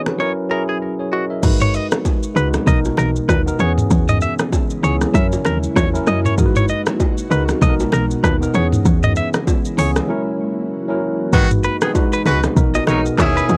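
Afrobeats at 97 BPM in G# minor with a swung sixteenth feel and a hypnotic, smooth mood, where a clean tine electric piano and a bright, twangy direct-recorded guitar riff with analog delay open over an up-front, cassette-tinged electronic drum kit with deep kick and metallic hats, vintage bongos and congas sit in the background, a punchy, woody log drum bass arrives at 1.4 s, a mellow, ethereal pad with chorus and phaser drifts in at 2.2 s, and after a short break a clear, up-front horn section takes a second line at 11.3 s, all cycling through F#7, G#m7, Bmaj7 and E6 in this lightly reverberant home cassette recording cut from a longer piece.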